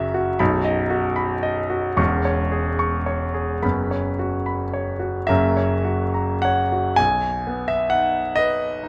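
Nostalgic and tender, this brief passage, taken from a longer romantic nocturne for solo piano, unfolds slowly in B major at roughly 33-44 BPM in a flowing 12/8, with a gently elastic rubato. A concert grand carries the entire 8.9 seconds alone, ranging from a deep bass low B up to the C# above the treble staff. The harmony moves from B through C#m/E and F#sus4 before resolving onto F# at 5.3 seconds and settling back on B at 7.0 seconds, where a new section begins. The instrument sounds clear and polished, placed up front and intimate, with the mechanical noise of its action audible beneath the notes. Close, detailed microphones and a light touch of reverb keep the sound present and close at hand.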